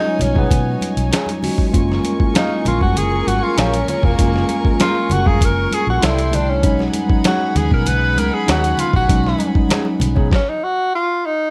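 Smooth and romantic, this lush 1970s-style soul excerpt features a subtone tenor saxophone solo with vibrato and scooped notes over a gritty, pitched-down boom bap drum kit, a round foam-muted electric bass, mellow tine electric piano, a twangy, slightly broken-up electric guitar riff in the background, dark sul tasto violins on a floating second line, very quiet bright congas, and a very quiet string section with portamento that enters at 1.7 seconds, before the band stops at 10.3 seconds, the drums trailing off at 10.5 seconds while the saxophone carries on until 11.5 seconds.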